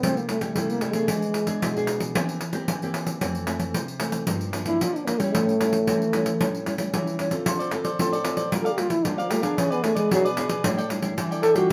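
In a moderate studio reverb, this yearning, bittersweet samba-choro excerpt at 113 BPM in 4/4 (tuned to A4 = 444 Hz) puts a close-miked, mellow trombone solo up front with jazz-style vibrato over fingerpicked classical nylon-string guitar and a jingly, up-front pandeiro, while a crisp, picked cavaquinho joins at 7.5 s as the harmony moves from Am7/C through E7, Fmaj7 and A7 toward a closing A7sus4.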